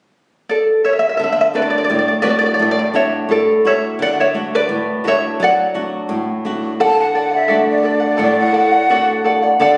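A fingerpicked charango opens this earthy, festive Andean folk excerpt at 0.5 s, its double strings shimmering up front with some strings doubled at the octave over an Asus4 chord. At 1.2 s a flamenco guitar joins in the lower register, fingerpicked and acoustic, as the harmony settles on D and the charango takes a solo passage through the middle of the piece. The straight duple pulse moves at an unhurried walk. At 6.8 s a large wooden quena enters up front with the melody, its end-blown tone breathy and warm, with soft attacks, vibrato and rolled-off highs. The sound is that of a phone in the room, bathed in the wet reverb of a recital hall and compressed.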